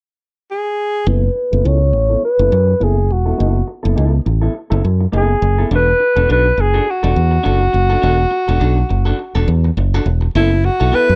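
A breathy alto saxophone opens this disco fragment alone at 0.5 s, singing a jazz-style solo line with vibrato and a smooth top, its sound softened by a low-pass filter and placed up front. At 1.1 s a fingered electric bass and a picked electric guitar arrive together, and the groove turns danceable and driving over a lightly swung sixteenth-note feel. The bass is dark, round and direct, sitting prominently beneath everything, while the compressed guitar, slightly broken-up and also low-pass filtered, stays further back as accompaniment. A filter sweep runs through the main stretch from 1.1 s to 10.4 s, as the harmony moves from F#m11 to E9sus4 and settles on F#m7. Light reverb gives the whole mix a little space around the saxophone's warm tone, and the clip, cut from a longer piece, stops shortly after 11 seconds.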